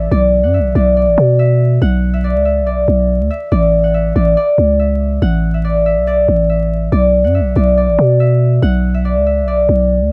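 Light studio reverb and a layer of vinyl crackle frame this tense, dark half-time hip hop excerpt at 141 BPM in B minor, where a fingerpicked, ringing Celtic harp carries the high melody up front while a growling, buzzy 808-style bass with a sine core, fast attack and decaying tail sits equally forward beneath it, both playing throughout as the harmony moves from Bm to Asus4 at 3.5 seconds and back to Bm at 6.9 seconds.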